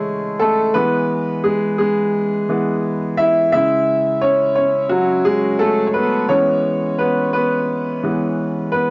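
Pop piano piece at 86 BPM in 4/4 with a straight feel, set in E major and tuned slightly below standard pitch, its mood uplifting and warm. A single upright piano plays alone across the whole 8.9-second fragment, cut from a longer piece, ranging from C#3 to E5. Its tone is clear and woody with a vintage character, notes carrying a long sustain and sitting up front in the mix. The harmony moves between C#m and E, settling on E at 6.3 seconds. Captured as a home recording on cassette with light reverb, the sound has its top end rolled off, lending the performance an aged haze.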